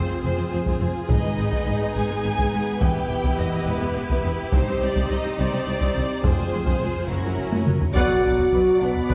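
Heavy-stick taiko drums with a vintage, band-limited sound drive this dark, dramatic cinematic orchestral cue, entering at 0.7 seconds under a slow 6/8 pulse at 70 BPM. Two bowed chamber violin lines carry the melody and a second line with focused vibrato, while a lush viola section fills in the accompaniment and bowed cellos and double basses anchor the bass from the background. A mellow French horn section holds sustained chords from a distance, and hard-mallet timpani sound briefly and very quietly early on. The harmony moves mostly through somber minor chords before a drum fill around 7.5 seconds leads to an accented arrival at 8.0 seconds. There an airy silver flute, a clear trombone section and a huge, dark impact join in, all set back in a reverberant scoring-stage space, before this fragment of a longer piece cuts off.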